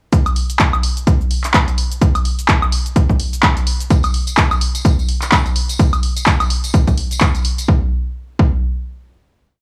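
A four-on-the-floor kick drives this short, complete house piece at 127 BPM in 4/4, with a 57% swing on the sixteenths giving it a loose, feel-good bounce. The electronic kick is layered and punchy, sitting up front with a tape-warm weight. An analog drum machine, also up front, fills out the groove with handclaps on the backbeat, closed and open hi-hats, shaker and a high woodblock. At 3.9 seconds an acoustic tambourine joins, tucked into the background with a small-room character that adds lift to the uplifting mood. The drop runs until 7.7 seconds, where the drum machine and tambourine stop and a final kick hit lands. The sound is dry and gritty, a hardware recording with little reverb and a touch of studio ambience.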